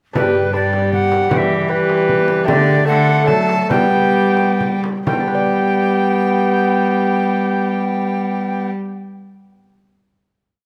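In a straight 3/4 at 125-155 BPM, this short, festive and stately renaissance-style consort dance in G major moves through G, E minor and a suspended D that resolves to D before returning home, slowing down from 1.9 to 5.1 seconds ahead of a held final chord. A breathy tenor recorder carries the melody up front, its wooden tone marked by vibrato and a crisp chiff on each attack. Beneath it, a distant viola and a clear trombone, both with light vibrato, play chords in the rhythm of the tune and then sustain them. A close, reedy cello with period gut-string tone holds the bass with passing notes. A fingerpicked lute with double gut strings rolls delicate chords in the background, and a small, bright frame drum plays a dance rhythm until 5.3 seconds. The consort sits in a moderate recital hall reverb that gives the ensemble a gentle sense of space.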